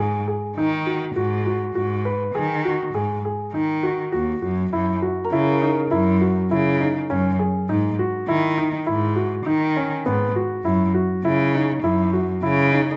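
In a straight 5/4 at 101 BPM, this urgent, pensive contemporary chamber piece in G# minor, cut from a longer work, sets warm, up-front baby grand piano arpeggios over a clear, focused bowed cello bass line with vibrato, while a shimmering, ringing hammered cimbalom sits in the background from 5.2 s, within a moderate recital hall reverb.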